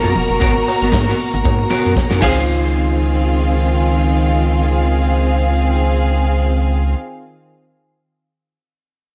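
A joyful, danceable disco excerpt in Db major at 116 BPM opens with a deep, round analog bass up front, a biting violin section on a second line, lush bowed strings holding sustained chords, and a twangy, slightly broken-up electric guitar in accompaniment. A punchy drum kit with bright cymbals, handclaps and gated reverb drives the opening alongside ringing, close conga hits and a faint, metallic cowbell, all falling away around a drum fill from about 2.0 to 2.5 seconds. The harmony moves from Abm9 to Dbmaj9 at 2.2 seconds, after which bass, guitar and strings carry the second section.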